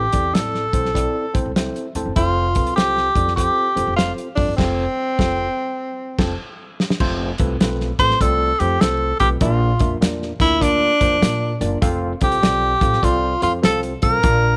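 Uptempo 1960s-style soul with a joyful, uplifting swing, this excerpt puts a smooth-topped tenor saxophone up front on the jazz-style solo melody, shaded with light vibrato, over a worn, slightly out-of-tune tine electric piano that is lightly overdriven through its built-in speakers and adds fills at 1.3 and 5.8 seconds. A woody, thumpy pizzicato upright bass and a gritty, saturated drum kit with dark cymbals, a tight kick and a pumping room drive the groove, with a band accent from 4.6 seconds and a drum fill at 6.4 seconds leading into the second section at 7.0 seconds. The whole sits in a small room ambience, and the piece moves from A minor through F and B-flat.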